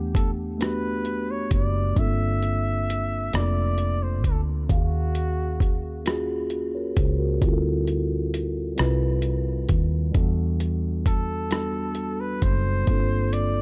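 Slow, sultry and yearning six-eight R&B at 44 BPM, this dark, dry-sounding fragment from a longer piece pairs a mellow tine electric piano with phaser and a round, foam-muted fingered electric bass over a gritty, compressed sampler-style drum kit of hi-hat, thumpy kick and rim click, while a clear flugelhorn with vibrato sings the melody from 0.2 to 6.0 seconds and returns at 11.1 seconds over Em11, Gm11, Ebm11 and Dm11 chords.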